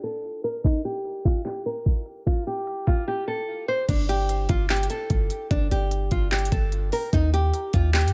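A small, fingerpicked nylon-string guitar carries the melody from the start, its acoustic tone softened by a low-pass filter and trailed by tape echo, while a filter sweep runs through the opening 3.9 seconds. This is a menacing, hard-hitting trap cut in G minor at 148 BPM, played in a half-time feel, and it comes from a longer piece. An electronic trap drum kit sits up front throughout, with a knocking kick, crisp hi-hats, handclaps and crash cymbal, all carrying a tape-warmed, produced character. At 3.9 seconds a clean 808-style bass arrives, deep, boomy and dark, with a sine-like body, a fast attack and a decaying tail, as the harmony settles on Gsus2 before shifting to Eb at 7.1 seconds. The mix is dry, with little reverb, and keeps the guitar, drums and bass close and forward.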